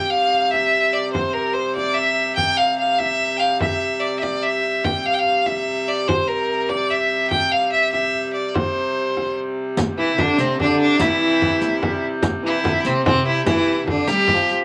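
Medieval dance in 6/8 at 98 BPM, counted in dotted quarters, with a rustic, ancient mood in C major, set in a small, reverberant room. A clear, focused bowed fiddle carries the melody up front with light vibrato over a dark, smooth hurdy-gurdy drone and a close, dry frame drum. At 9.8 seconds a riq adds bright jingles, and at 10.0 seconds a reedy, gut-strung viola da gamba enters with a biting, ringing second line.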